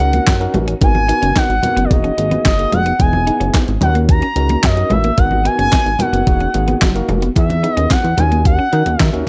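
A smooth, gliding portamento lead carries the melody up front, its sawtooth-and-triangle tone softened by a gentle attack, vibrato and chorus, giving this early-eighties boogie funk cut a danceable, late-night glow. Beneath it, a glossy chorused synth bass built from pulse and sawtooth waves with a plucky filter sits prominently in the mix, while a crisp 8-bit drum machine punches through with a thumpy kick, fat snare, hi-hat and handclaps that sound re-recorded in a small room. A clean tine electric piano plays the accompaniment through its built-in speakers, moving through lush seventh and ninth chords such as D#m7, G#m9 and Emaj9#11. Further back, a dark, scooped semi-hollow guitar repeats a fingered riff through analog chorus, and very quiet, low-tuned congas with a vintage, band-limited sound come in at 0.1 seconds. Light reverb and digital ambience frame this brief section, which is cut from a longer piece.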